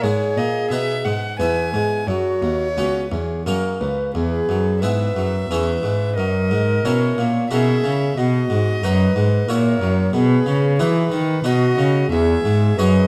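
In a straight 3/4 at 90 BPM, this baroque-style sonata movement in B major unfolds serenely and radiantly, tuned to A4 = 444 Hz and cut from a longer piece. A rich, gut-string violin carries the melody in period style, while a wooden baroque flute adds a pure second line with vibrato and a crisp attack. A brilliant Italian-style harpsichord with octave strings supplies plucked accompaniment, and a warm, reedy cello sits up front on the bass, all in a moderate recital hall reverb as the harmony settles from G#m toward B around 8.2 seconds.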